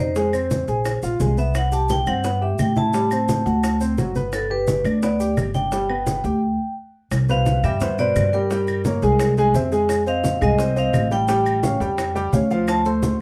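Heard from further back in a studio with a lively, reverberant ambience, this short excerpt of Afro-Cuban jazz in G major moves at a brisk 172 BPM in a straight 4/4, with a lively, sunny mood. A ringing, metallic vibraphone, struck with medium hard mallets and its motor off, carries the melody in its upper register. Up front, a warm, natural grand piano supplies the accompaniment, and a woody, pizzicato upright bass with steel strings anchors the low end. Behind them sit round, low-tuned bongos, bright, thin-skinned congas played with soft hands, and woody claves, while close-sounding maracas add a grainy, mellow shimmer. The harmony wanders colourfully through chords like Fm, Cmaj7, Gdim and Aaug7, and a sudden stop from 6.4 to 7.1 s clears the air before the second section begins.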